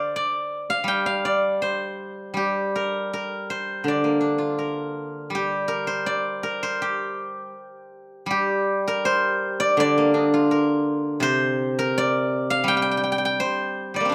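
A steel-string zither played with fingerpicks opens this brief cut from a longer solo Chinese traditional piece, its silvery, ringing tone sitting up front in a small, moderately reverberant room with a rough home-demo feel as it moves through a longing, contemplative rubato in 2/4 and shifts into a new section at 8.3 seconds.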